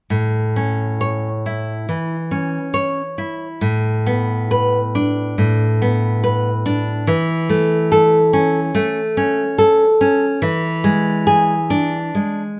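Classical piece in A major, tender and serene, moving at a relaxed, rubato pace of about 64-73 BPM in 4/4. A single fingerpicked nylon-string guitar sits up front with a full-bodied, fresh-stringed tone, spanning A2 to C#5 and passing from A through Bm7/A and A/E to E7, with finger squeak audible. Moderate studio reverb lends a gentle sense of space to this short section cut from a longer work, which ends on the unresolved E7 at 12.6 seconds.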